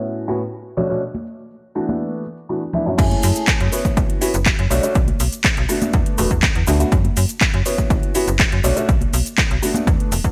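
Bright 1980s-style digital production with light reverb frames this sensual, groovy slice of filtered disco house, cut from a longer piece. It opens on a dark, worn grand piano, up front and intimate with audible action noise, playing phased, pumping, low-pass-filtered chords such as A6, Bm9 and E9sus4 under a filter sweep, while compressed, saturated egg shaker and congas sit in the background. At 3.0 seconds the drop arrives: a punchy, overdriven electronic kick and an overdriven house kit of cabasa, crash cymbal, handclaps and hats, both up front and re-recorded in a large room, join with pumping on the hats, cymbals and percussion. A slap-like FM bass enters at the same moment, snappy with a fast, metallic attack that decays, pumping and filtered. The harmony cycles through F#m7, a rootless A6, Bm9, E9sus4 and F#5 until the cut at 10.3 seconds.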